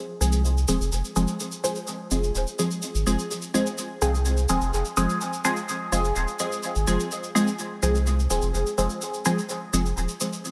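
Bathed in a lush hall reverb, this meditative, nocturnal dub techno excerpt moves at 126 BPM over a single F minor chord, with muted, detuned chord stabs colored by phaser and dub echo riding above a round, deep analog bass while a grainy, bright tube shaker ticks along for roughly 10.5 seconds.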